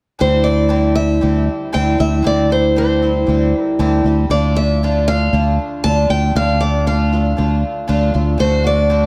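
This acoustic folk passage, cut from a longer piece, carries a haunting, melancholic mood in a straight 4/4 feel. A picked steel-string acoustic guitar with a parlour character carries the melody in a fairly high register, sitting up front in the mix. Beneath it, a picked twelve-string acoustic guitar plays the accompaniment with a dark, woody, boxy tone from old strings and ladder bracing, its octave-doubled courses giving a shimmering edge. A fingered electric bass, direct and amped with a warm, up-front presence, holds a low D throughout. All three parts play together from 0.2 to 9.1 seconds over a harmony that moves from C/D to Dm and settles on D, wrapped in light reverb.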